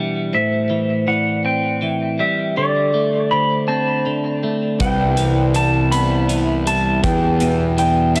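Clean, compressed electric guitar arpeggios and mellow, ringing vibraphone with soft mallets and fast motor vibrato open this melancholic, brooding post-rock excerpt in A minor at a slow 54 BPM in 6/8, joined at 0.3 seconds by a dark lap steel melody played with fingerpicks, volume swells and slide, all three carrying digital delay over chords moving from Am7 through D5, Cmaj7 and Em7, until at 4.8 seconds a punchy, fuzz-overdriven picked bass, a huge arena drum kit with hi-hat and a punchy kick, and very quiet pedal steel swells arrive in a light studio reverb.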